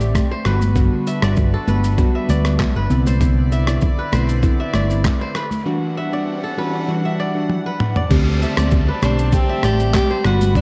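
Afrobeats at 98 BPM in D mixolydian, breezy and romantic, cut from a longer piece. A gritty, pitched-down boom bap sampler-style kit sits up front with a thumpy kick, handclaps, rim click, shaker, toms and crash, joined by a dark, round fingered electric bass and very quiet, close congas with a thick-skinned tone. Glassy digital keys with chorus and a filter sweep carry the accompaniment, while a bright, ringing kora riff with delay floats over floating sul tasto string chords through Gmaj7, Cmaj9 and Em9. A very quiet electronic riser and downlifter enter at 5.3 seconds, a break arrives at 5.7 seconds, and a drum fill leads into a D7sus4 passage at 8.1 seconds. At 9.0 seconds a breathy, whispered tenor saxophone takes an intimate jazz-style solo with scooped notes. The whole recording sits in a small room, colored by worn cassette tape with warbly pitch drift.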